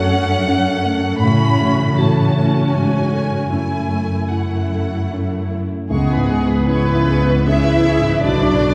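Sorrowful and moving, this cinematic passage in a rubato triple metre sets a lush, vibrato-rich violin section on the melody above a dark, mellow concert grand piano, an expressive viola section, a ringing, thumb-plucked harp in the background and a close cello section carrying the bass with portamento. At 5.9 s a warm solo clarinet in classical style and a smooth, even second violin line add a second voice, while a rich double bass section enters in the background beneath them. The music is heard from further back in a wet scoring-stage reverb, as though lifted from a longer score.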